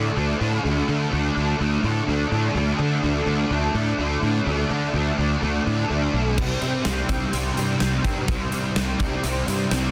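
Dreamy and blissful, this short cut from a longer shoegaze and dream pop rock piece moves at 126 BPM in a straight 4/4, tuned slightly below standard pitch. A double-tracked, compressed fuzz guitar plays a distorted riff with ensemble chorus alongside a growly, overdriven fingered electric bass, both up front in a dense, heavily limited modern master with small room ambience. At 6.4 seconds, as the harmony moves from D5 to C5, a huge arena drum kit enters with a punchy kick, medium-tuned snare, hi-hat and bright crash cymbals in a hall sound.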